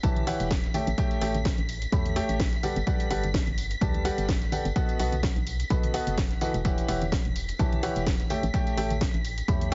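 A clear, woody upright piano leads this soulful, energetic piano house cut, playing an up-front riff with audible action noise, long sustain, tape echo and sidechain pumping. Beneath it, a hollow, organ-like FM bass with a fast attack and a decaying tone pumps along in the low register, while a lush symphonic violin section holds smooth, bowed chords high above with warm vibrato. A punchy analog kick, re-recorded in a large room, sits up front, joined by a layered garage kit with a cracking snare and bright hats. Deep in the mix, a gritty, overdriven sampler-style soul kit and saturated tambourine and congas played with soft hands add texture. The harmony cycles through Em69, A7, Gmaj9 and B7 with a light swing, and the whole piece is heavily compressed into a dulled radio sound, a 9.7-second excerpt cut from a longer piece.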